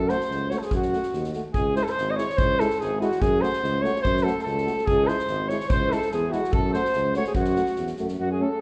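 Set in a brisk 2/4 at 144 BPM with a slight swing on the sixteenths, this short Balkan brass band excerpt feels restless and virtuosic. It moves between F#m and C#m roughly every one and a half seconds. A mellow flugelhorn carries the melody up front, and an alto saxophone with light vibrato and a soft attack follows a second line from the background. A warm tuba anchors the bass, also up front, while trombone and a vintage-toned euphonium, both with vibrato, fill in accompaniment from behind. A soft-mallet acoustic drum kit adds a punchy kick and a medium-tuned snare. The whole band sits in a moderate concert hall reverb that gives the horns a distant, roomy, classical cast over roughly 8.6 seconds.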